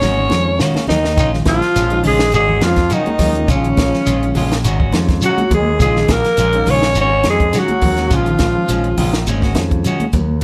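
Afrobeat with a funky, defiant edge, cut from a longer piece, opening on a drum fill from a dry, compact cocktail kit with a high-tuned snare and punchy kick before the band settles into a lightly swung vamp alternating Ab7sus4 and Bbm7. A raspy, gritty alto saxophone leads up front, with a bright trombone second line in the background until 9.3 seconds, while a fingered electric bass sounds bright and direct beneath. Dark, clean electric guitars, one playing arpeggios and the other picked, scooped stabs, mingle with grainy shekere, very quiet thin-skinned congas and a soft, flute-like tonewheel organ with percussive attack, slow rotary speaker and chorus vibrato that enters at 0.3 seconds, under light reverb with some lossy compression artefacts.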